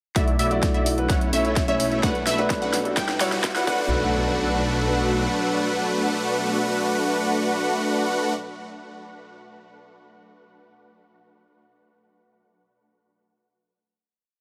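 Drenched in a huge ambient reverb with a long tail, this short, anthemic and emotional festival progressive house piece in B minor at 128 BPM builds for its first 3.9 seconds and then lands on a final hit, with every synth and the piano pumping against the sidechain. An overdriven, punchy kick drives four-on-the-floor beneath a programmed kit of closed and half-open hats and a massive snare, while a thick, detuned saw bass holds B1 until 5.3 seconds and up-front supersaw chords carry a dotted-rhythm riff through a low-pass filter sweep and digital delay. Behind them sit a clear, boxy concert grand with audible action noise playing dotted-rhythm chords, an airy, phased pad sustaining chords, a bright pluck arpeggiating in unison with the chords, and a very quiet riser and impact from 2.2 seconds.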